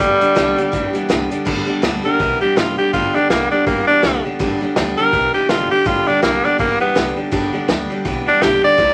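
A raspy, gritty tenor saxophone leads from the first second of this upbeat, retro rockabilly fragment at 164 BPM with a swung feel in G mixolydian, over a full-bodied picked acoustic guitar with audible finger squeak, a twangy, slightly broken-up electric guitar riff bathed in spring reverb, a woody, thumpy upright bass in the background and a vintage drum kit with dark cymbals and a punchy kick. At 1.5 seconds the forceful, up-front saxophone moves into a solo with light vibrato that runs to the end at 8.9 seconds. The whole piece sits in a small room with vinyl crackle, giving it an old-record character.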